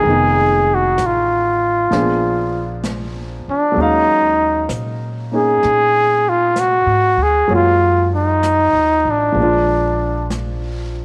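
Jazz ballad in a smoky, intimate mood, cut from a longer piece, where a breathy, mellow trumpet sings the up-front melody with light vibrato and scooped notes until 10.3 seconds over a clear grand piano with audible action noise, a woody pizzicato upright bass and a dark, softly brushed drum kit, all softened by light reverb and small room ambience.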